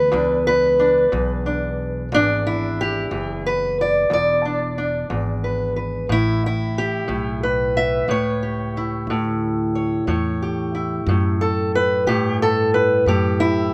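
Acoustic country blues with a swaggering, soulful mood, moving at 60 BPM in 12/8 with a straight feel. A fingerpicked steel-string parlour guitar carries the melody throughout, its dark, boxy tone sitting up front and ranging from E2 to E5. Beneath it, a pizzicato upright bass strung with steel plays the bass line from start to finish, sounding woody and thumpy at a lower level in the mix. The harmony rests on E7 before shifting to A7 at 6.1 seconds. Recorded outdoors with little reverb and scant sense of a room, this short excerpt cut from a longer piece has a close, dry intimacy.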